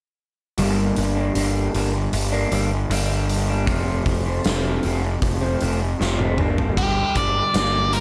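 Brooding and cathartic, this short cut from a quiet-loud alternative rock piece in G minor moves at 78 BPM in a straight 4/4, with a twangy, slightly broken-up electric guitar playing phaser-tinged arpeggios through a small old amp over a punchy, overdriven fuzz bass and a big acoustic rock kit in a bright stone room, until a drum fill at 6.0 seconds ushers in a dark, octave-fuzz lead guitar melody at 6.8 seconds as the chords move from Gm to F and back to Gm under light reverb.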